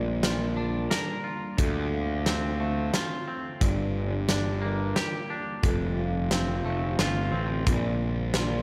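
Cathartic and melancholic, this short post-rock excerpt in 3/4 at 89 BPM moves through Bb6, Dm7, Gm7 and F6 chords as a twangy, clean electric guitar and a ringing vibraphone, both with slapback echo, play arpeggios over a growly fuzz-overdriven picked bass and a big, up-front rock drum kit with a tight kick, while a very quiet, glassy, warbling FM pad enters at 1.0 seconds with sustained chords under light studio reverb.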